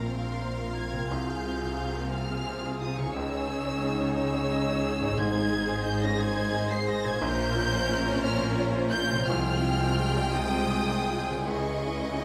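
This cinematic excerpt opens with strings, grand piano and harp sounding together in a slow, rubato 6/8 at 58 BPM, with an uplifting, tender mood. High violins carry the melody with expressive, lush vibrato, while a second violin line beneath them sounds rich and smooth, and a focused viola section sits in the background as accompaniment. The grand piano is clear and intimate, its long sustain and audible action noise giving a polished presence, and a very quiet harp rings with mellow fingerpicked arpeggios. Dark, distant cellos with a soft attack and a double bass section together hold the low end. A round, very quiet timpani note from soft mallets enters at 5.2 seconds and stops at 6.2 seconds, under the Ab chord in a progression that moves through Bbsus2, Fmadd9/C and Dbmadd9. Moderate scoring stage reverb and close, detailed microphones give the ensemble a spacious yet immediate sound.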